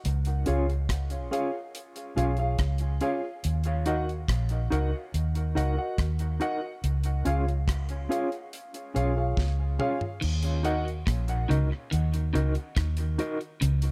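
A dark, round, foam-muted fingered bass sits up front in this deep, heavy dub reggae excerpt at 71 BPM in Eb minor, riding over a dry drum kit with a tight kick and rim clicks, while a clean, fingered electric guitar with tremolo and dub echo and a woody, slightly detuned upright piano playing stabs through dub echo move between Db and Ebm chords, until a drum fill at 9.4 s leads at 10.2 s into a slightly broken-up picked guitar riff in the background, bathed in spring reverb and echo.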